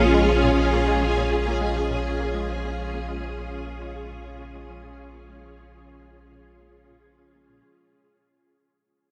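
Drenched in a vast, echoing cathedral reverb, this expansive, mysterious fragment of ambient, sequencer-driven space music in Bb minor at 102 BPM sets a lush, bright vintage string machine's slow-blooming sustained Bbm chords up front over a deep, round sine sub bass, while a tight, driving sequenced synth riff with a mellow filter pluck, chorus and tape echo sits in the background and fades out across the full 7.6 seconds.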